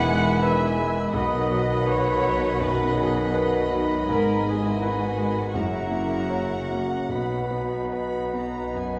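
Bathed in a wet recital-hall reverb, this lush, passionate classical excerpt in B major moves with rubato at 72-85 BPM as a clear, long-sustaining baby grand piano carries the melody beneath a very quiet, vibrato-rich violin section, while a hollow flute ensemble, a second violin section, a clarinet and a vintage-toned oboe weave second lines, a dark bassoon and a viola section accompany, French horn and mellow trombone sections hold distant chords, a punchy trumpet section adds stabs, cello and double bass sections bow the bass, and soft-mallet timpani sound only from 5.5 to 6.7 seconds.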